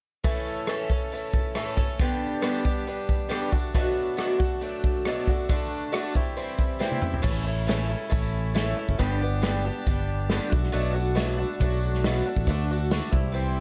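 A straight 4/4 pulse at 137 BPM drives this nostalgic, open-road slice of folk rock and heartland rock in A major, cut from a longer piece. A picked twelve-string acoustic guitar, bright and shimmering with octave-doubled strings and a slightly boxy body, sits up front and carries the accompaniment through a progression of A, G, Bm7 and D, with a passing C. A natural country drum kit plays from the start, with a punchy kick, a medium-tuned snare, rim clicks, hi-hat, crash and toms in a studio room sound. A drum fill at 6.8 seconds leads into a new section at 7.2 seconds, where a warm, direct fingered electric bass enters up front and holds the low end. The small room ambience and dark production give the whole take a close, homespun glow.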